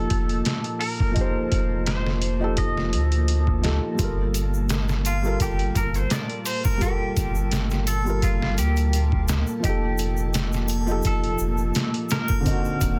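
A dense, heavily limited and fairly dry mix frames this cinematic, hypnotic trip hop excerpt at 85 BPM with a light 16th-note swing, where a pitched-down, muffled sampler-style drum kit with a thumpy kick, medium-tuned snare, hi-hat and studio reverb sits up front beside a deep, round analog bass, while a felt-muted upright piano with harmonic tremolo and audible action noise plays soft, intimate accompaniment, a warbling vintage string machine cello patch with ensemble chorus holds dark sustained chords in the background, a bright, twangy clean electric guitar carries the melody through tremolo and tape echo, and a close, dry tube shaker and triangle join at 4.0 s over chords moving from F9 to Gm9 and back before a D7b9 at 12.5 s.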